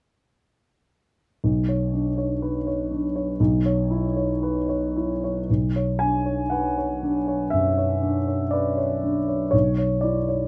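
A clear grand piano, placed up front with long sustain, plays alone from 1.4 to 10.5 seconds in this wistful, mysterious fragment of impressionist classical music, ranging from B1 to G#5 in B dorian. The slow 60 BPM pulse in 4/4 is shaped with rubato, and the harmony drifts around Bmadd9 and Bsus24 before settling on Dmaj7sus2/B near 9.5 seconds. Light reverb and a dark production surround the present piano tone, tuned to A4 = 441 Hz.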